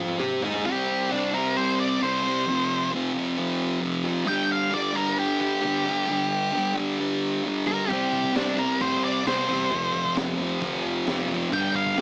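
Garage rock with a swaggering, rowdy attitude, this cut from a longer piece moves at 132 BPM in a straight 4/4. It opens with a quick drum fill from a crunchy breakbeat kit and a hollow-body short-scale bass, both dropping out at 0.6 seconds while a thick, double-tracked fuzz guitar carries the riff up front through power chords on C, F and G. From 0.7 seconds a dark octave-fuzz lead guitar takes the melody alongside it, picked and distorted with a taped grit. The bass and drums return at 7.9 seconds and sit in the background: the bass round and amped with tube saturation, the kit smooth and saturated with a tight kick, high-tuned snare, dark cymbals and a rolled-off top. The whole thing has the lo-fi character of a home cassette recording heard through a small speaker, with a touch of studio reverb.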